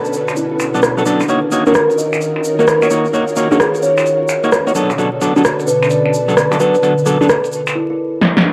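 A punchy analog drum machine sits up front, its congas, finger snaps, hi-hat, rim click and snare softened by low-pass filtering and given a small-room, re-recorded edge, driving a moody, bouncy two-step UK garage groove with a 64% swing on the sixteenths. Over it, a woody, hollow-toned kalimba carries the melody with mellow fingertip plucks that keep ringing. From 0.7 seconds, a dark, clean electric guitar, fingered and up front, adds stabs trailed by tape echo. A silky vintage string machine holds slow-blooming chords moving between Bm7 and Ebm7, while an ethereal, detuned pad drifts in the background with its own reverb, both thickened by ensemble chorus. A grainy egg shaker adds bright acoustic texture, and a short drum fill arrives at 8.2 seconds before this cut from a longer piece ends. The recording has a lo-fi home-cassette character, with vinyl crackle, a moderate spring reverb and digital ambience.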